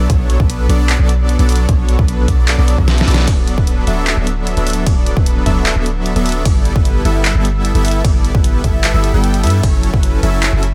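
A fat, nasal sawtooth polysynth and a deep, boomy 808-style bass open this euphoric, playful future bass excerpt together, both pumping against the sidechain in a half-time feel. The detuned, ring-modulated synth carries the bold riff with chorus and tape echo, its sustained chords moving from Bm9 through D6 and G69 to F#m7. Up front, the bass adds a dark sine tone with a noise layer and a fast, decaying attack. A punchy electronic kick and a dubstep kit with a deep snare, handclaps, hi-hat and ride cymbal arrive at 0.1 seconds, both layered and re-recorded in a large room. The kick drops out for a brief drum fill at 2.9 seconds and falls silent at 10.0 seconds, while the mix overall stays dry and loud.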